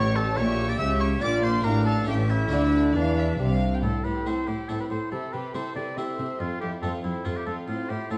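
Classical, baroque-style concerto movement in D minor and 3/4 at 140 BPM, dramatic and stormy, shifting to A minor at 3.8 s in this short cut from a longer piece, tuned to A4 = 436 Hz. An oboe with light vibrato carries the melody with a distant, roomy quality alongside a gut-string violin section in the background, while a second violin line, a shadowy viola section, and a bright, plucked harpsichord fill the middle. A reedy cello section anchors the bass throughout, joined up front by a double bass section that stops at 3.8 s, all set in a wet stone room with a dark production.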